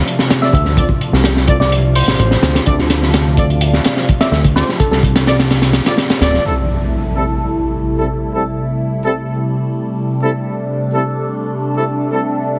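A straight 4/4 breakbeat groove at 127 BPM drives this energetic, gritty breaks excerpt in A minor, with a crunchy, saturated drum kit up front that pairs a punchy kick with a high-tuned snare and hi-hat under a dark, rolled-off top. A fat, thick analog bass built from detuned sawtooth, square and triangle tones with ring modulation and a filter sweep holds the low end alongside the drums until both stop at 6.4 seconds, as the harmony moves from Dm7 to Am7. Beneath them a swirling, evolving phased pad sustains detuned chords with chorus and sidechain pumping, lasting the full stretch to 12.6 seconds. A soft, round FM lead with a keys-like, decaying tone plays a brief melody through a small-speaker filter, chorus and dub echo, while a close-miked brass section adds stabs with light vibrato, vintage 12-bit sampler grit and its own dub echo. An electronic impact lands up front at 6.4 seconds, and the whole mix carries a heavily compressed, radio-like sound in a small room with light reverb.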